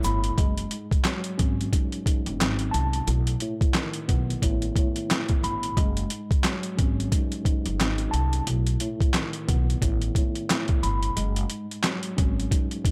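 A gritty, compressed sampler-style drum kit sits up front in this reflective yet tough boom-bap hip-hop excerpt, with a pitched-down, tape-warm character, a thumpy kick, a medium-tuned snare, hi-hat and handclaps. The groove moves at 89 BPM in 4/4 with a 60% swing on the 16ths, in F# dorian and tuned slightly sharp to A4 = 441 Hz. Underneath, a woody pizzicato upright bass with steel strings holds the low end, while a mellow, clean tine electric piano, heard as if through its own built-in speakers and shaped by high-pass and low-pass filters, supplies the chords. The harmony alternates between F#madd9 and B7 before a short break at 11.2 seconds, where it lands on F#sus2. The bass stops at 12.4 seconds, and the drums and keys carry on to the cut at 12.9 seconds, all set in a small room ambience.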